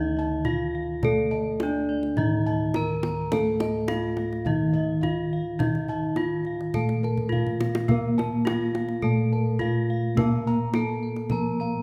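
A generous recital-hall reverb with a 1.9-second decay surrounds this hypnotic, shimmering passage of Javanese gamelan, cut from a longer piece and moving at a steady 105 BPM in a straight 4/4. Up front, a bright, close-miked bronze metallophone struck with a horn mallet carries the melody between Bb3 and Bb4. A darker, smooth-toned metallophone supplies the lower accompaniment, while a softer metallophone on padded disc mallets ripples through arpeggios, its paired tuning producing shimmering beats. Mellow bossed gongs played with padded beaters share those high arpeggios, and a fuller set of round, beating bossed gongs sits in the background to carry the bass, reaching down to D2. The kendang enters at 0.4 seconds with tight, dry hand strokes and breaks into a short drum fill from 7.2 to 7.9 seconds.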